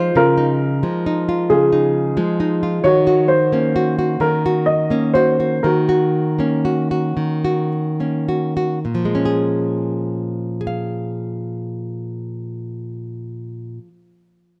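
A woody upright piano carries the melody up front, its polished, present tone and short sustain giving each note a clear, intimate presence before it drops out at 7.7 seconds. Beneath it, a fingerpicked nylon-string guitar with a classical, acoustic character supplies the accompaniment and continues alone until 14.0 seconds. This melancholic, reflective folk-pop ballad sits in Bb minor in a slow, straight 6/8, moving at roughly 34-45 BPM counted in dotted quarters, and it gradually slows from 2.8 to 8.8 seconds. The harmony moves from Dbadd9 to Ebm7 before settling on Bbm7 as a new section begins. The sound is a dry, close 1970s-style studio recording with a light touch of reverb, and the passage is cut from a longer piece.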